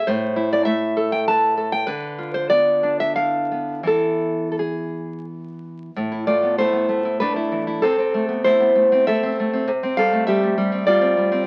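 Warm and tender, this short excerpt from a longer romantic piece for solo classical guitar sits in A minor and moves in a rubato 3/4, with the tempo drifting between 82 and 102 BPM. A single nylon-string guitar carries everything from 0.0 to 11.5 seconds, fingerpicked and placed up front, its warm classical tone ranging from A2 up to A5, with finger squeaks audible on the strings. The opening phrase begins on a high A before passing through a diminished chord over D to E, and at 6.0 seconds a second section settles back onto A minor, moving through its inversion over C to a C major chord. A moderate studio reverb lends the guitar a soft halo of space. The whole performance is heard as if from a very old 78 rpm record, with vinyl crackle running beneath the gentle, expressive playing.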